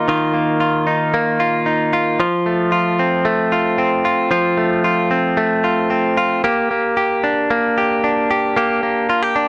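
A bright, twangy electric guitar, recorded direct with a scooped, compressed tone and placed up front, plays alone through this restless, wistful indie pop excerpt at 113 BPM in a straight 4/4, moving from Ebsus2 to F at 2.2 seconds and Gm at 6.4 seconds within a range of Eb3 to G4, its picked notes carrying light reverb in a dry, close 1970s-style studio sound.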